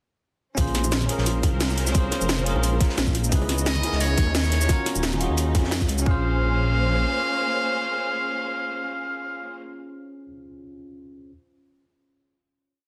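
A dense, heavily limited modern master with light reverb carries this melancholic, rolling liquid drum and bass piece at 175 BPM in Bb minor, moving through Bbm9, Dbm9 and Ebm9 chords. From the opening, a bell-like tine electric piano with phaser and dub echo and a lush, bowed string section with sidechain pumping sit over a deep, detuned saw bass with long gliding notes. Beneath them run an up-front overdriven kick, a two-step kit with cracking snare, bright hats and cabasa, a gritty looped breakbeat in the background, and very quiet congas and bongos. At 3.7 seconds a buzzy trumpet with metal mute, sampler grit and digital delay enters with jazz-style call phrases, and it plays on over the final chord after the drums stop at 6.1 seconds.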